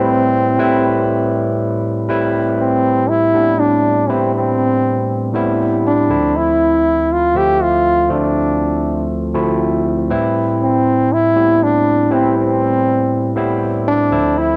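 A disco groove at 120 BPM in A minor, this sultry, danceable piece is cut from a longer track and carries a gentle 16th-note swing. A clear trombone takes the solo melody up front, its pop-style line sitting between C4 and G4 with light vibrato and a smooth top. Beside it, a bright tine electric piano plays the accompaniment through a combo amp, barky and lightly overdriven, colored by a phaser and the grain of cassette tape. The harmony opens on Am9, moves to Am7 at 2.1 seconds, shifts to Dm7 at 6.1 seconds and returns to Am7 at 10.1 seconds. Light reverb and a small-room ambience frame this home cassette recording.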